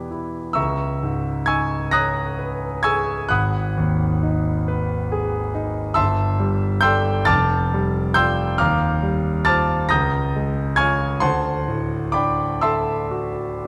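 In a 6/8 with uneven, rubato beats, this short impressionist solo piano passage feels nocturnal and mysterious, cut from a longer classical piece. A clear concert grand plays alone for the full 13.7 seconds, ranging from a deep bass low in the keyboard up to high, glinting treble notes. The instrument sits up front and intimate, its polished tone carrying audible action noise that brings the listener close to the keys. Colorful extended harmonies drift from Em7 through C#m9, G#m7 and Gsus2, then glide through a chain of sixth-nine chords before arriving at D9. A moderate reverb on a scoring stage, about 1.8 seconds long, gives the present sound a gentle halo of space.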